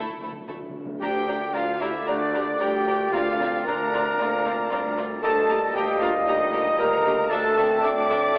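A soft, round timpani fill opens this heroic, swashbuckling film-score excerpt at 114 BPM, under a full string body of rich violins carrying the melody, a very quiet second violin line, clear violas, and lush cello and double bass sections holding a low D in the background. At 1.0 s the winds and brass arrive, with a clear solo oboe and a pure concert flute on second lines, mellow French horns and very quiet trombones sustaining chords, and dark, punchy trumpet stabs, while a distant, mellow clarinet joins at 2.1 s and the timpani drops out at 3.9 s. Chords move from Dsus2 through Gm/D, Bbadd9/D and Eb/D over the held bass, and the determined sound is bathed in a wet scoring-stage reverb yet degraded by worn, warbling cassette tape with pitch drift and a telephone-like band.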